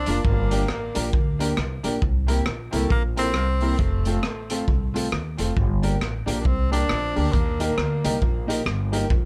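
Upbeat and bouncy, this swung ska excerpt at 136 BPM sets a clear, vibrato-laden tenor saxophone melody with tape echo over a thumpy, woody pizzicato upright bass and a gritty, saturated garage drum kit of hi-hat, punchy kick and rim click in a small pumping room, while a worn, slightly detuned upright piano adds stabs and a dark, clean electric guitar with a vibrato effect sits in the background, all moving through Gm, C7, F, Gm and Eb under light reverb.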